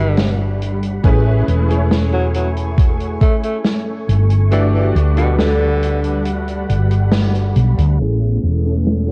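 Nostalgic and faded, this slow 69 BPM vaporwave fragment in A major drifts between Gmaj7 and Amaj7 as a clear tenor saxophone with light vibrato carries the melody through tape echo over a clangy electric grand piano, a silky string machine washed in phaser and ensemble chorus, and a dark, round fretless bass up front, while an open jazz kit's hi-hat and snare enter at 0.2 s and a thumpy sampler-style kick thuds from 1.0 to 3.4 s, all steeped in warbling cassette drift, light room reverb and a filter sweep from 8.0 s.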